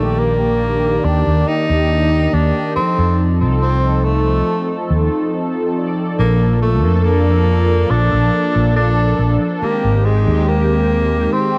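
A warm tenor saxophone carries the melody in this nostalgic, dreamy vaporwave excerpt at 70 BPM in Bb major, its subtone, vibrato and scooped notes trailing off into tape echo. Mellow synth brass, detuned and sawtooth-edged with a filter sweep, subtle chorus and a cassette-tape haze, sustains the chords Ebmaj7, F7, Bbmaj7 and Abmaj7 beneath it. A round, dark fretless electric bass sits up front until 11.3 seconds, all within an echo-heavy mix with light reverb and a cassette-tape character.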